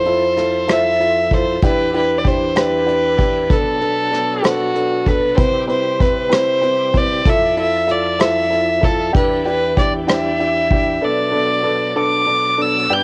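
A swaying 6/8 lilt at 64 BPM carries this heartfelt pop ballad fragment, with a brush drum kit of hi-hat, punchy kick and rim click, its top rolled off and its sound run through cassette tape, keeping time until it drops out at 10.9 s. Up front, a single reedy, gut-string violin sings the bowed, period-style melody through cassette tape and tape echo, while a woody upright piano accompanies beneath. Further back, a bright, shouting tonewheel organ holds chords with key click, chorus vibrato and a slow rotary speaker over a drifting Fmaj7, Em7, Bm7 and Cmaj7 progression, all captured as a home cassette recording with light reverb.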